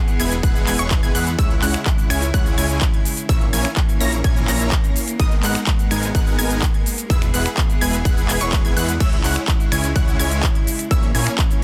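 A punchy electronic kick sits up front and drives this anthemic, emotional slice of festival progressive house at 126 BPM in a straight 4/4, entering at 0.4 seconds and running to 11.5 seconds. Around it, a layered big-room dance kit adds crisp hi-hats, shaker, finger snaps, handclaps and crash cymbal, with a tape-warm character and soft clipping on the snare. Huge, detuned supersaw chords carry the riff with delay, while a fat analog bass with a filter sweep holds the low end from E1 to E2, both pumping against the sidechain. In the background, a bright unison pluck with a noise layer spins high arpeggios through delay, and an earthy chamber string section bowed with light vibrato sustains chords from the very first moment. The harmony cycles through E, C#m, A#dim and G#madd9 over a dense, heavily limited master bathed in digital ambience.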